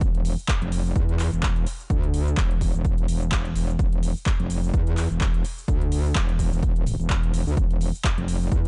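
Gritty and swaggering, this short bass house cut from a longer piece moves at 127 BPM in 4/4 with a 56% swing on the sixteenths. A metallic wobble bass sits up front across the whole passage, an aggressive FM sound with a fast attack and sustained notes between E1 and E2, thickened by chorus and tube saturation and pumping through sidechain compression. A punchy, layered electronic kick with a tape-like warmth drives the groove, while a big-room dance kit adds cabasa, handclaps and metallic hi-hats, all overdriven and set lower in the mix. The production is dark and dry, with little reverb and the top end rolled off above 10.7 kHz, keeping the overall sound warm.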